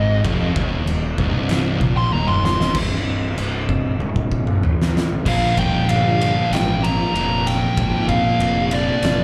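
A dark, fuzz-soaked lead guitar sits up front in this brooding stoner and doom metal excerpt, soloing from the start in a range of D5 to C6 with distortion, slapback echo and tape echo. It moves at 96 BPM in a straight 4/4, over chords that shift from Eb5 to Am/C at 2.8 seconds and on to Bb5 at 5.3 seconds. Beneath it, three rhythm guitars play riffs between C2 and Bb3: a bright, double-tracked overdriven guitar and a dark fuzz guitar, both very quiet, and a louder, warmer fuzz guitar with distortion. A growly, fingered bass with fuzz and overdrive stays up front in the low register. An oversized, low-tuned acoustic drum kit enters at 0.2 seconds, saturated and gritty, with a boomy kick, fat snare, dark cymbals, toms and a pumping big-room sound, adding fills that lead into each new section. The whole performance carries the ominous feel of a live club gig heard through the venue's PA, wrapped in club reverb.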